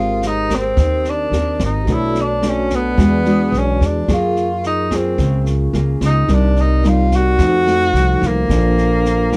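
Bossa nova in a sunny, breezy mood, this short excerpt from a longer piece moves in a straight 4/4 under light reverb. A mellow tenor saxophone carries the melody up front, and its soft attack, scooped notes and vibrato give it a relaxed jazz voice with a distant, roomy placement. Fingerpicked nylon-string guitar supplies full-bodied, deep classical accompaniment, while a vibraphone with soft mallets rings quietly in the background with a metallic shimmer and fast motor vibrato. Upright bass is plucked on steel strings with a woody, thumpy tone. A brush drum kit enters at 0.2 s with a boomy kick, rim click and high-tuned snare, set back in a small room with a rolled-off top. The harmony moves through rich jazz chords, from Abmaj9 to a closing Bbmaj7.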